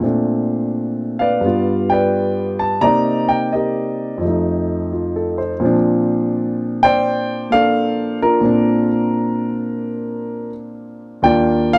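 Swung eighth notes at 86 BPM in 4/4 carry this playful solo jazz extract in Bb major, where an intimate, up-front concert grand piano with deep bass and audible action noise moves through Bbmaj9, G7, Cm9 and F7 before reaching Ebmaj9 at 11.2 seconds, captured by close, detailed microphones in light reverb.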